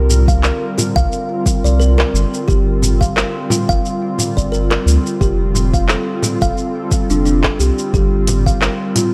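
Organic downtempo with a hypnotic, meditative pull, cut from a longer piece. An airy, breathy pad with chorus and a grainy 12-bit sampler texture sustains chords alongside a round, dark analog bass that sits up front, both pumping under sidechain, while a mellow, woody kalimba plays soft arpeggios through a digital delay from 0.3 seconds. An overdriven, deep electronic kick anchors a lightly swung groove of smooth hi-hats, handclaps and shaker in studio reverb, with a small, bright frame drum played by soft hands close and dry.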